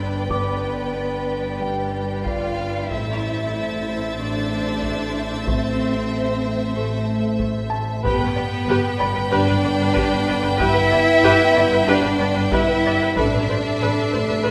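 A smooth, even cello section carries the bass at the front of this eerie, uneasy suspense cue, a short cut from a longer film score at 93 BPM in 4/4, moving between G and A minor chords and settling on Amadd9 at 13.2 s. Around it, intense bowed violins hold the melody with a focused second violin line behind, a rich viola section fills the accompaniment, distant mellow French horns sustain chords, a boxy soft-mallet marimba plays a round low riff, and a double bass section anchors the bottom. A felt-muted upright piano adds intimate texture with audible action noise, close, dry taiko struck with hard sticks enters at 0.3 s, and a high violin texture appears from 2.9 s to 7.7 s and returns at 13.2 s, all set in a wet scoring-stage reverb.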